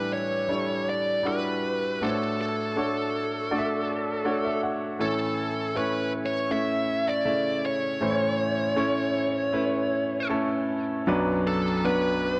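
Worn, warbling cassette tape gives this recording a drifting, unsteady pitch, and a wet spring reverb with a 2.6-second tail hangs over it. The piece is a heartbroken, longing pop excerpt at a slow 79 BPM in straight 4/4, tuned to A4 = 439 Hz. A clear concert grand piano carries the accompaniment throughout, intimate and polished, sitting up front with deep bass, long sustain and audible action noise, and it plays a fill from 3.9 to 5.0 seconds. Above it, a bluesy, overdriven electric lead guitar sings the melody between A4 and E5, its picked tone dark and distorted and just as close to the listener. The harmony moves from A7sus4 to Dmaj7/A and settles on A before turning to Bm at 11.1 seconds, where a brief new section begins and the excerpt breaks off.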